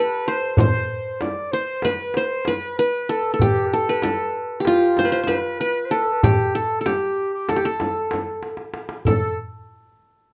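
Turkish makam ensemble music in A makam ussak, with a longing, hypnotic mood at 191 eighth-note beats per minute in 9/8: a bright-edged, fingerpicked qanun carries the melody up front while a mellow, classical-style clarinet plays a second line, a clay-shell darbuka joins at 0.4 seconds and a soft-handed frame drum at 0.6 seconds, all set in a wet studio reverb, with a drum fill from 8.4 to 9.1 seconds leading into a new section of this cut from a longer piece.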